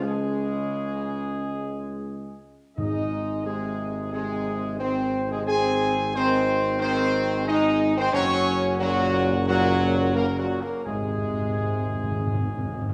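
Heard in a wet recital hall with a 1.4-second reverb tail, this majestic, triumphant classical brass excerpt in Ab major moves at 89 BPM in 4/4 with uneven beats: a distant, roomy trumpet section carries the melody over sustained chords from an up-front, warm French horn section and a tight, vintage-toned trombone section in the background, while a dark, smooth-topped tuba anchors the bass, and close, dry timpani played with hard mallets on calf heads cut in crisply at 2.8 seconds before returning for a fill from 10.9 seconds to the end.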